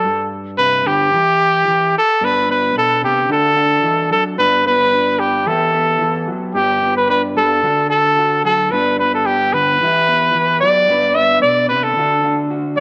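Carefree and warm, this highlife excerpt features a clear, vintage-toned trumpet with jazz-style vibrato singing the melody up front while a dark, slightly broken-up electric guitar plays fingered accompaniment beneath it, both bathed in a moderate spring reverb as the chords cycle through G, D and E minor.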